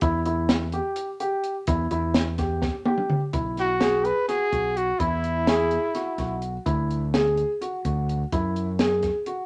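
Bright and intricate, this short cut from a longer progressive instrumental rides an uneven 7/8 meter with a straight feel. A dark, mellow concert grand piano spins arpeggios with deep bass weight, while an overdriven fingered electric bass adds a growly, amped edge underneath. A compact cocktail drum kit, sitting up front in a small room, pairs a punchy kick with a high-tuned snare, smooth hi-hat and toms, its top rolled off; a drum fill at 2.6 seconds leads into the second section. At 3.6 seconds a close-miked trumpet steps forward for a pop-style solo, its tone warm and punchy, colored by vibrato and scooped notes. The harmony moves from Em through Bsus4 to Dadd9, and a moderate studio reverb gives the up-front ensemble a little air.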